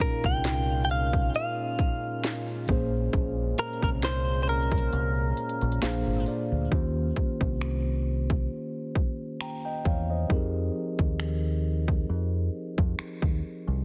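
A slow 67 BPM trap groove in 4/4 with a light swing on the sixteenths drives this sensual, longing contemporary R&B excerpt, its electronic drum kit of hard-clipped kick, sharp snare, crisp hats and finger snaps sitting up front beside a dark, round fingered bass that enters at 0.2 seconds. A clean, picked electric guitar carries the melody through the opening 6.2 seconds over a mellow tine electric piano and a softly vibrato French horn section holding chords in the background, while the kick drops out briefly and the electric piano plays a fill before the second section begins at 6.7 seconds. The chords move from Db6 through Bbm9 and Bb7 to Eb13 and Fm11, all in a dry, heavily compressed radio-style sound.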